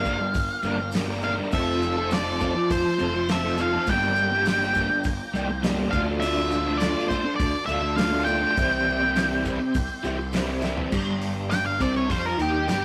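This hypnotic, mysterious psychedelic rock excerpt in G dorian opens at once with a dark, fuzz-laden octave lead guitar carrying the melody up front, over a double-tracked overdriven electric guitar riff that churns through a rotary speaker. Beneath them, a very quiet tonewheel organ holds piping, scooped chords with audible key click and a slow rotary swirl, while a round, fuzzed fingered bass anchors the low end. From 0.1 s a damped 70s drum kit enters with dry, dark cymbals, a tight kick and a medium-tuned snare, joined by grainy, band-limited maracas at a very quiet level. At a steady 102 BPM in straight 4/4, the harmony moves through Gm7, Fmaj7, Dm7 and Cadd9, tuned slightly flat to A4 = 438 Hz. A drum fill at 10.6 s leads into a new section where the lead guitar breaks into a solo over a plain Gm chord from 10.9 s. The whole piece has a rough rehearsal-room character, with tube saturation and a moderate stone-room reverb.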